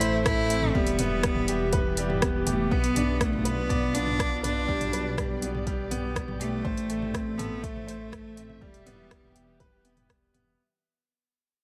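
Piano and strings electronica with an intimate, melancholic mood, this is a short piece cut from a longer track that opens on a drop and begins fading out at 2.7 seconds. A close, bowed solo cello carries the melody up front with rich vibrato and a touch of digital delay. It sits alongside a brilliant grand piano riff that also carries delay. Behind them, a dark, woody studio string section holds lush sustained chords with sidechain pumping. A deep, rumbling detuned sawtooth bass pumps the same way. The kit is a layered deep house set of hi-hat, rim click and toms, joined at 0.3 seconds by a deep electronic kick, both overdriven and re-recorded in a small room. Light reverb surrounds the whole as the harmony moves from Am through Em, Bdim and G/B before returning to Am and Em.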